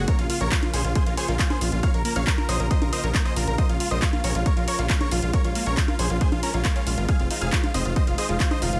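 Emotional and euphoric, this short cut from a longer uplifting trance piece drives along at 137 BPM in a straight 4/4, centred on Bb minor with the harmony resting on Bbm before moving to Fm7 at 7.1 seconds. A huge, detuned supersaw lead carries the melody between Db4 and F5, its compressed, sawtooth tone pumping with the sidechain and trailing delay. Beneath it, a gritty, saturated synth bass with a resonant filter pluck sits up front between F1 and Bb1, while a lush, thick unison pad holds sustained chords in the background with chorus and a slow attack. A brilliant baby grand piano plays a second line high in the register, from F5 to F6, and a round, warbling analog pluck spins arpeggios with chorus and delay, both tucked behind the main parts and breathing with the sidechain. A punchy electronic kick, re-recorded in a small room, drives from the front, joined by an analog drum machine playing congas, handclaps and hi-hat, all wrapped in a digital ambience.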